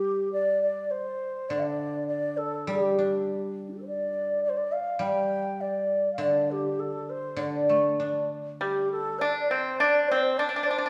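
A pure, mellow bamboo xiao sings a graceful, tender melody with vibrato over the silvery, ringing fingerpicked guzheng in this rubato fragment of Chinese traditional chamber music, bathed in the wet reverb of a scoring stage, until a dry, percussive pipa enters with a second line at 8.6 seconds and the guzheng falls away at 9.2 seconds.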